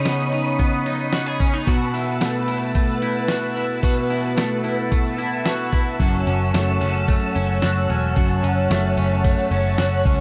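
A bright, twangy electric guitar at the edge of break-up sits up front, picking arpeggios through lush chorus and tape echo, while a mellow, organ-like ensemble string pad with phaser and ensemble chorus holds sustained chords behind it in this melancholic, haunting dream pop excerpt. A clean 12-bit drum machine with a thumpy kick and fat snare keeps a straight 4/4 pulse from 0.1 seconds, and a round, foam-muted picked bass joins at 6.0 seconds as the harmony moves from C#sus2 and B7sus4 to F#m7. Light reverb and a dark, warm production frame the whole piece.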